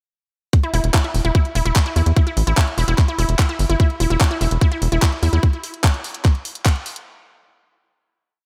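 Set in a light reverb, this short, intense psychedelic trance piece in E minor drives at 147 BPM in straight 4/4, playing as a single drop from 0.5 seconds. An overdriven, up-front four-on-the-floor electronic kick leads alongside gritty programmed garage drums with closed and open hats and a clap on the backbeat, while a dark, punchy sequencer bass gallops in sixteenth notes around E1 to E2. Above them, a bright, detuned unison pluck plays an acid line on E4, its 3-step loop drifting hypnotically against the bar through sidechain pumping and tape echo until it stops at 5.4 seconds.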